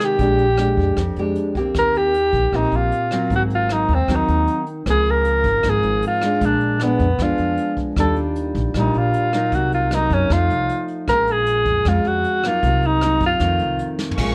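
Through a worn, warbling cassette haze with light reverb, this smooth, melancholic bossa nova excerpt at 154 BPM features a breathy, subtoned alto saxophone carrying the melody up front over fingerpicked nylon-string guitar with audible finger squeak, a woody, thumpy pizzicato upright bass entering at 0.2 seconds, and a jazz brush drum kit with dark cymbals and a boomy kick that plays a fill at 14.0 seconds, just before a dark, bowed studio string section touches in with soft-attack sustained chords at 14.2 seconds, moving through changes like Bb13, Ebmaj9 and Cm7b5 to F7.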